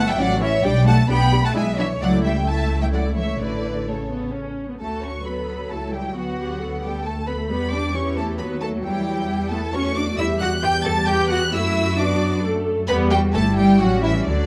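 Lively and graceful, this quick classical-period string orchestra movement in D major at 133 BPM in 3/4 sets a rich violin section singing the melody with vibrato and expressive portamento over a smooth second violin line, rich violas, warm cellos and a dark, up-front double bass section, all bowed together through 14.5 seconds in a moderate recital-hall reverb, with the passage shifting into a new section at 4.8 seconds.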